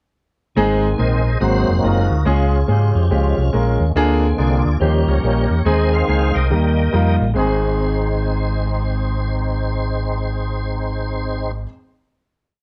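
The tonewheel organ takes a solo from 0.6 to 7.4 seconds with full, sustained chords colored by a slow rotary speaker and chorus vibrato. This short, complete uptempo gospel piece feels soulful and jubilant, swinging in 4/4 through a breakdown that settles onto a final chord at 7.4 seconds. Up front, a fingered electric bass sounds round and amped, walking and running in gospel style with chromatic approach notes. A clear baby grand piano accompanies in close-voiced quarter-note chords, intimate and natural, with audible action noise and long sustain. The progression moves from Ab through Ab7, Db, Bb7/D, Eb7, Ab/Eb and Eb before resolving home to Ab. Light reverb frames a dark production.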